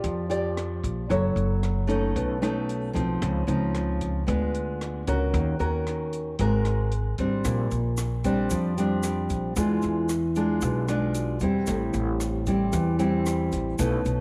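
Light studio reverb gives this romantic, sophisticated bossa nova fragment at 113 BPM a polished, intimate sheen, with a fingerpicked classical nylon-string guitar sitting up front, its finger squeaks audible as it moves through lush chords like Bb6, Dbmaj9 and E7b9. A woody, growly pizzicato upright bass anchors the straight 4/4 feel beneath a dark, smooth cocktail drum kit of hi-hat, punchy kick and rim click. At 7.4 seconds a grainy, bright tube shaker joins the groove.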